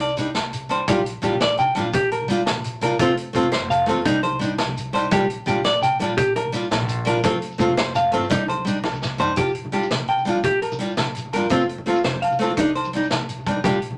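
A wet studio reverb frames this joyful, danceable highlife guitar band cut from a longer piece, with a twangy clean electric guitar playing arpeggios up front beside a picked steel-string acoustic guitar in an auditorium-like space. Beneath them sit a gritty, saturated vintage drum kit with a punchy kick and a rolled-off top, a woody, thumpy upright bass played pizzicato on gut strings, ringing agogo bells and a very quiet, grainy shekere. Close, dry congas join at 0.9 seconds in the background, and a drum fill at 8.8 seconds leads into a new section at 9.4 seconds.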